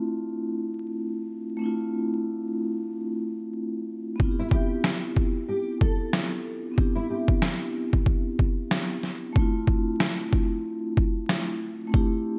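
The gritty boom-bap drum kit stands out most: a thumpy, pitched-down kick and a medium-tuned snare, sampler-style and compressed, with overdrive and gated reverb, sitting up front from 4.2 seconds with the hi-hats muted. This nostalgic hip-hop excerpt moves at 93 BPM in 4/4 with a 16th-note swing, in C major, over a Dm7 to Cmaj7 to Dm7 progression. A soft-mallet vibraphone opens alone, metallic and ringing with a slow motor vibrato, its mellow, vintage, band-limited tone shaped by a low-pass filter, while a filter sweep runs through the opening section. A thumb-plucked nylon-string guitar carries a brief classical melody until 8.7 seconds, its fresh strings softened by ensemble chorus and a low-pass filter. A jingly tambourine sits close and dry in the background. The bright 1980s-style digital production adds vinyl crackle and a lush hall reverb, giving the excerpt a warm, dusty glow.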